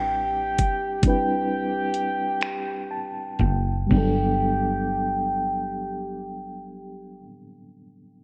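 Slow R&B in 6/8 at roughly 38-46 BPM, this short cut from a longer piece in G major feels intimate and tender, moving from Am11 to Gmaj7 at 3.9 seconds. A soft, octave-layered synth lead holds a sustained G5, its round, full-bodied tone coloured by chorus, phaser and vibrato. Beneath it, a mellow, reedy electric piano with fast tremolo carries the accompaniment through to 8.2 seconds and adds a fill between 2.4 and 3.9 seconds, while a woody, growly fretless bass with subtle chorus sits low and up front. A smooth electronic drum kit with a knocking kick, metallic hi-hats, finger snaps and a crash cymbal appears from 0.6 to 4.2 seconds, treated with gated reverb. The opening seconds slow down under a filter sweep, and the whole sits in a moderate plate reverb with bright, 1980s-style digital production.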